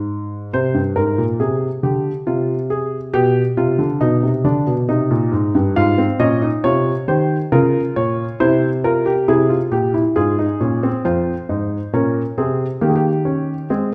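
In a slow, straight 3/4 at 68 BPM, this short excerpt of a baroque-style three-part fugue in F minor unfolds with a contemplative, serious mood, its tuning sitting at A4 = 437 Hz. A dark baby grand piano plays solo from F2 to F5, mellow and intimate with short sustain and audible action noise, placed up front within a wet recital hall reverb of 1.4 seconds. Chords move from Fm/C through G7/B, Cm and C7 before a new section at 11.1 seconds settles on Fm and turns toward Eb7.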